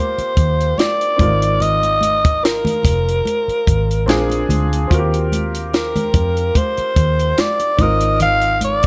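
Romantic and smooth, this short cut from a longer piece is lush 1970s-style soul at a relaxed 73 BPM in 4/4, with a gentle sixteenth-note swing in Eb major. A raspy alto saxophone carries the melody up front, its gritty tone softened by vibrato and a smooth top, sitting between Bb4 and F5. A grand piano with long sustain accompanies from the start, moving through Eb6, Ab69 and Bb7 chords, while a dark, round, foam-muted electric bass with an amped vintage character joins at 0.2 seconds in the low register. A compact cocktail drum kit enters at the same moment, dry and natural, with a high-tuned snare, tight kick and hi-hat sitting close in the mix. Thick-skinned congas played with hard hands add a close, dry pulse in the background, and a studio reverb gives the whole passage a lush sheen.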